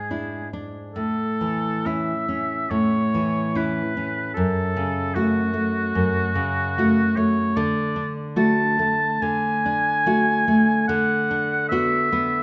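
Romantic duo for oboe and classical guitar, tender and serene, in a rubato 4/4 around 63-76 BPM in A major: a vintage-toned oboe with light vibrato carries the melody up front while a deep, fingerpicked nylon-string guitar gives warm accompaniment through chords moving from E7/G# to A, F#m, D and Bm/D, all set in moderate recital hall reverb across this 12.4-second passage cut from a longer piece.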